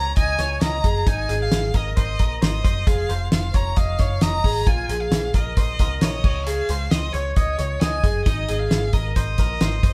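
Jangly indie pop with a nostalgic, youthful glow, this short cut from a longer piece moves at a steady, straight pulse in four. A rich, focused violin carries the melody with vibrato and a slightly boxy bowed tone, while an electric guitar through a small old amp plays bright, twangy, slightly broken-up picked arpeggios beneath it. A deep, dark dub-style picked bass sits round and low, and a cloth-damped, thuddy drum kit enters at 0.2 seconds with a fat snare, tight kick, hi-hat and crash, its rolled-off top placed up front in the mix. The chords circle through Dbsus2, Abadd9, Fm and Bbm before returning to Dbsus2 and Abadd9. The band plays live together in a stone room whose moderate reverb gives the whole a natural, roomy blend.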